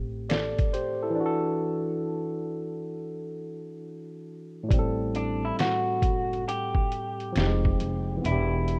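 Nostalgic and reflective, this swung lo-fi hip hop excerpt pairs a barky, lightly overdriven tine electric piano and a woody pizzicato upright bass with a muffled, pitched-down sampler-style drum kit, its thumpy kick up front, and a barely audible finger snap, before a slightly broken-up electric guitar through a small old amp takes the melody at 5.2 s, all in a rough home-demo mix with cassette-tape character and light reverb.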